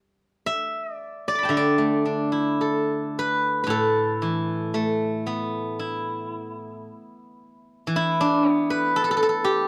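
Chinese traditional solo plucked-string music in a pastoral, flowing mood, this short excerpt features a ringing, silvery steel-string zither played with fingerpicks, sounding up front in a dry, close 1970s-style studio with small room reverb as it moves in free rubato around 54-59 BPM in the D zhi mode from 0.5 to 9.7 seconds.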